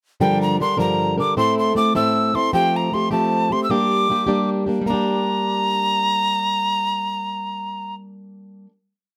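This is a short, complete Celtic folk jig in G dorian, moving in a driving, spirited 6/8 at 103 beats per minute counted in dotted quarters with a straight feel. A wooden whistle carries the motif-based melody in period phrases from 0.2 seconds, its airy tone marked by a crisp, chiffy attack, lifted highs and expressive vibrato, sitting up front between G5 and E6. Beside it, a plugged-in acoustic guitar plays swing-style accompaniment, fingerpicked in eighths with open chord shapes, its sound dark and boxy, reaching from G2 to Bb4 and also placed up front. The harmony moves through Gm7, Am and Fadd9 before settling on Gm, and the short tune gives way to a final chord. The whistle stops at 7.9 seconds while the guitar carries on until 8.7 seconds, all captured with close, detailed microphones and a light touch of reverb.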